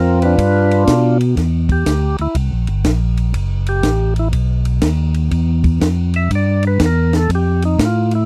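Bluesy and greasy, this short piece cut from a longer soul jazz organ trio track swings in 4/4. A percussive tonewheel organ carries the melody in a clean, full voice, with key click and second-harmonic percussion sounding through a slowly turning rotary speaker. Underneath, a second tonewheel organ holds down the bass line with a fat, lightly overdriven tone, colored by chorus vibrato and its own slow rotary speaker, and this organ takes a solo from 1.4 seconds. A compact cocktail drum kit comes in at 0.2 seconds, sitting lower in the mix with dark cymbals, a high-tuned snare, a tight kick, hi-hat and ride. The harmony moves from G7 through C9, F#m, B and Em to F9, and the dry, close studio sound recalls a 1970s session, with both organs placed up front.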